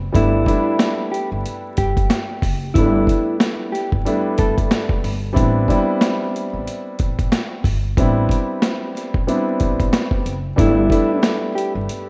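A rough home-demo mix with vinyl crackle and light digital ambience frames this soulful boom-bap hip-hop excerpt, swung on the sixteenths. Up front, a gritty, compressed sampler-style drum kit, pitched down, with a thumpy kick and a high-tuned snare, sits beside a dark, mellow concert grand piano moving between G69 and Am11, while a woody pizzicato upright bass on steel strings holds the low end. A clean, fingered electric guitar carries the melody through spring reverb and tape echo, dropping out at 4.6 seconds and returning at 10.6 seconds as the G69 chord comes back.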